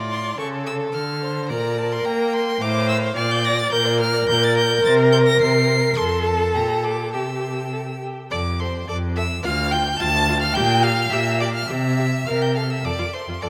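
This is a quick classical-period movement for string quartet, spirited and lively, moving at 107 BPM in 2/4 with a rubato feel and settling into F major from 3.7 s. A clear, close violin carries the melody high above the ensemble from 0.1 s, its bowed line smooth and even with vibrato. A second violin with a rich tone supplies a second line, while the viola, focused with a smooth top, fills in the accompaniment. The cello anchors the bass, sitting up front with a full, vibrato-laden sound. The harmony passes through chords such as Dm, Bb, Gm/Bb and C before a new section begins at 8.3 s, and the passage, cut from a longer piece, closes on an open F5 at 12.8 s. A wet cathedral reverb places the quartet in a vast, echoing space.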